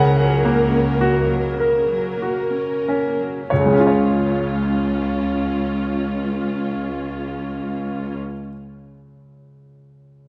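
Passionate and lyrical, this romantic classical passage for piano and orchestra, cut from a longer piece, unfolds in a slow, rubato 12/8 at 34 BPM in Db major. A brilliant, up-front baby grand piano carries the melody from Db2 to Bb5 over a smooth, bowed viola section and a rich, vibrato-laden cello section holding a low Db2. The music slows through the opening Gb/Db harmony before settling on Db at 3.5 seconds, and the strings stop at 8.2 seconds, leaving the bright piano alone in the lush scoring-stage reverb until 10.3 seconds.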